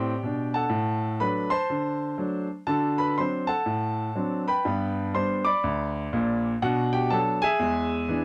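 Swinging and exuberant, this short stride-piano jazz passage in G major moves at 121 BPM with a swung 4/4 feel, carried by a solo grand piano that sounds clear, smooth and vintage, up front with long sustain in a light reverb, ranging from Bb1 to D6 over 8.2 seconds as it passes from G through D7 back to G and on to Bm7 and E7.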